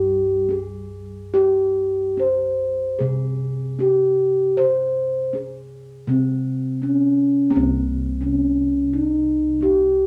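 A bronze metallophone rings up front with a mellow, airy tone from padded disc mallets, carrying the melody over round, beating bossed gongs in this shimmering, hypnotic Javanese gamelan excerpt in C pelog, moving at 70-86 BPM in a straight 4/4 through a studio reverb, with a shift to a new section at 7.5 seconds.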